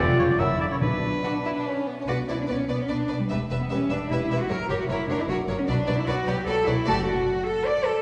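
In a quick triple metre with a flexible, rubato feel, this short cut from a longer classical-period orchestral movement moves with a spirited, lively energy in a minor key. A rich, smooth violin section carries the melody with even vibrato, while a second violin section adds a clear, intense, closely miked inner line. A bright, present oboe sounds from the very start as a solo voice up front for only the opening 1.6 seconds, and a timpani hit with medium mallets on calf heads lands briefly at 0.8 seconds. Underneath, a lush viola section plays accompaniment in the background, the cello section sits up front with a full, smooth-topped tone, and the double basses bow a focused low line. The orchestra is heard from further back in a reverberant scoring stage, giving the sound a soft, rounded top end.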